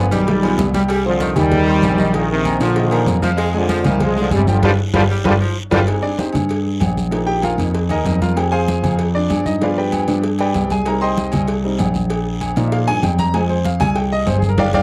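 A brilliant, tightly voiced trombone section with light vibrato and a slapback echo carries the melody over a drum fill in this driving, passionate salsa excerpt in C minor at 193 BPM, joined by a bright saxophone section on a second line, a clear, intimate grand piano with audible action noise, and a dark, boxy piano holding the bass. Congas, round low-tuned cowbell and bongos, and ringing agogo bells and timbales keep up a percussion bed in the background, while a raspy guiro sits close and dry. After a band accent, the horns stop at 5.8 seconds and a grand piano solo follows from 5.9 seconds over the cycling G7, Cm, Bbsus4 and Fm changes, all in a dry, close 1970s-style studio sound with light reverb.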